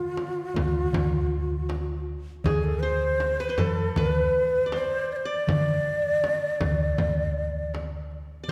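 A breathy, end-blown ney opens this short cut from a longer makam ensemble piece. It sits up front, carrying a longing, melancholic melody with vibrato, tongued notes and an unsteady, airy top. Beneath it from the start, a quieter qanun played with fingerpicks adds a second line, its triple strings giving a bright edge. Darbuka and frame drum join at 0.2 seconds, both struck with hard hands: the small clay-shell darbuka sits high and in the background, while the large frame drum sounds deep. A dark, round hollow-body electric bass enters at 0.5 seconds, amped and punchy in the low register. The ensemble rings in a church or concert hall with a wet, lingering reverb, and the ney falls away at 7.8 seconds before the recording ends.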